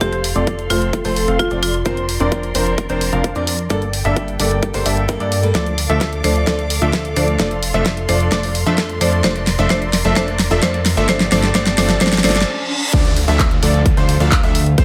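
Festival progressive house with an emotional, powerful mood, this excerpt builds over a punchy layered kick, a pop kit with a fat snare and bright hats up front, and a fat, saturated, nasal analog bass, all pumping against sustained chords from dark, lush sul tasto strings, with a picked, boxy old ladder-braced acoustic guitar accompanying in the background. A brilliant grand piano with audible action noise plays arpeggios through 12-bit sampler grit and tape echo, while a detuned supersaw stab riff plays under a filter sweep and a close-miked padauk marimba with hard mallets carries the melody with its own tape echo. A drum fill, very quiet risers and a reverse cymbal lead to a brief stop before the drop lands at 12.9 seconds in a small, moderately reverberant room.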